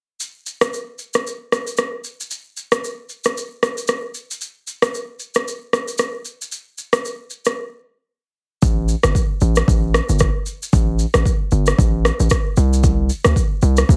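Heavily compressed with a radio sound and light reverb, this mellow, smooth afrobeats excerpt at 114 BPM in 4/4, swung 58% on sixteenths and tuned to A4 = 444 Hz, opens on an electronic, overdriven drum kit of deep kick, rim click and shaker, re-recorded in a small room and set up front, reaches a break at 7.6 seconds, and at 8.6 seconds brings in a punchy, heavy 808-style sine bass with a noise layer, fast attack and decaying notes, also up front and spanning G1 to D2.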